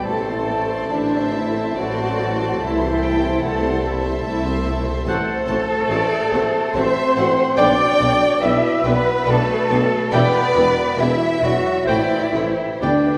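A chamber violin section carries the tender melody with light vibrato, a soft sul tasto touch and an intimate closeness, while a second, richer violin line, an airy small flute group, a bright oboe and a mellow clarinet sit in the background over woody violas, distant dark French horn chords, an expressive cello section with portamento, a double bass section and a smooth-topped tuba, all in a rubato classical 3/4 metre bathed in a wet concert hall reverb and heard from further back in the room.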